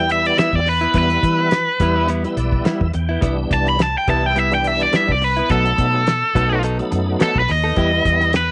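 Straight-eighth soul blues with a smoky, soulful mood, cut from a longer piece, where a bright, overdriven electric guitar with tape echo carries the up-front melody over a full tonewheel organ through slow rotary speaker and chorus vibrato, which adds a fill from 2.1 to 3.2 seconds, while a round, foam-muted vintage bass, a dry, cloth-damped thuddy kit with a fat snare and tight kick, and clean direct-recorded guitar stabs in the background move from Em through Cmaj7 and B7 back to Em in a studio reverb with a softened top end.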